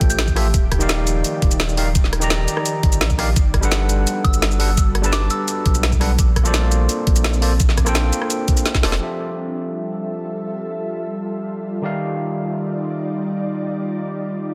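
Liquid drum and bass at 170 BPM in F major, lush and uplifting, this excerpt opens on a drop where a knocking, overdriven kick and an up-front kit of woody snare, bright hats, rim click and shaker drive over a deep, round sine sub bass, all cutting out after a drum fill that ends at 9.0 seconds. Throughout, a barky, gritty electric piano with tape echo plays chords through Fmaj9, Ebmaj9, Gmaj9 and Bbmaj9 alongside an ethereal, detuned pad that pumps with sidechain and blooms in its own chorus and reverb. A soft, pure FM bell with phaser and delay glints in the background, briefly at the start and again around 4.2 seconds, all set in light reverb with a dense, heavily limited modern master.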